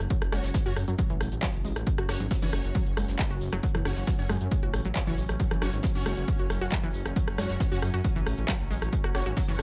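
A dark, intense stretch of driving peak-time techno opens at once with aggressive, bright rave stabs soaked in chorus, phaser, reverb and digital delay, a thick, menacing detuned saw bass, an evolving analog drone sitting in the background, and a tape-toned techno kit of handclaps, smooth hats, rim click and shaker, each of these pumping against the sidechain. From 0.1 s a punchy electronic kick lands up front, joined by a warbling, lo-fi pluck riff with chorus and delay tucked into the background, and a very quiet acoustic brush kit of high-tuned snare and hi-hat. The mix is dry and the straight 4/4 pulse stays relentless throughout.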